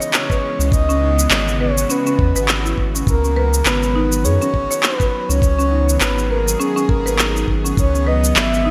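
A lush hall reverb and bright 1980s-style digital sheen frame this mystical, earthy excerpt of organic downtempo, cut from a longer piece and moving at 102 BPM in 4/4 with a gentle swing on the sixteenths. A breathy, flute-like synth lead carries the melody with soft chorus, vibrato and delay, floating above a tense, string-like bowed drone whose detuned sawtooth chords breathe with phaser, built-in reverb and sidechain pumping. A buzzing marimba played with medium mallets spins woody, dry arpeggios through a digital delay. Up-front electronic cabasa and handclaps sit in a gated reverb, joined at 0.3 seconds by a knocking electronic kick drum. At 0.6 seconds a round, deep analog bass with a fast attack and a filter sweep enters, anchoring the slow harmony as it shifts from C#m7 to Bmaj7 and back to C#m7.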